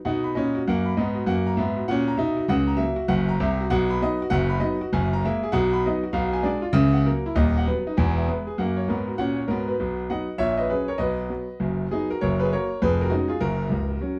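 Stride jazz for solo grand piano, swinging and exuberant at 198 BPM in B major, this brief excerpt features a clear, boxy piano with short sustain sitting up front across a range from C#1 to B5, its chords moving from B through F#7, Bdim7 and E before a second section begins at 9.8 seconds, all in a dark production with light reverb.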